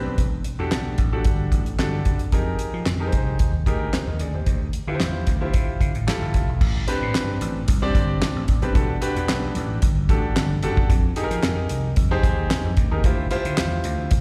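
Late-night and funky, this early-eighties boogie funk cut from a longer piece moves at 112 BPM in a straight 4/4 in A minor, with a growly, punchy slap bass and an up-front, dry 70s drum kit (fat snare, tight kick, hi-hat, handclaps and crash) playing alongside an intimate grand piano whose audible action noise comes through tube saturation and slapback echo over minor-eleventh chords moving through Em11, Fm11, Dm11 and Am11, all heard as a live gig through the venue's PA with recital hall reverb.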